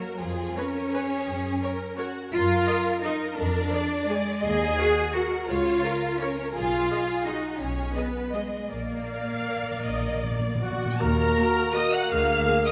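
This is a classical orchestral ballroom waltz in 3/4 and Eb minor, sweeping and elegant, moving at 149-184 BPM with a supple rubato feel. The strings carry it from the opening, with a rich, focused violin section singing the melody over a darker, more distant violin line and a viola section tucked in the background with soft attacks and portamento. Beneath them, a smooth, even cello section and a warm double bass section carry the bass, while a mellow French horn section holds sustained chords in the background. Round, soft-mallet timpani with calf heads, close and dry, add a fill from 8.7 to 11.0 seconds. Near the close, an airy flute and a punchy oboe join with a second line at 10.6 seconds, soon followed by a mellow clarinet and a roomy, dark bassoon as a new section begins at 11.0 seconds. The whole is bathed in wet scoring-stage reverb, and the passage is cut from a longer piece.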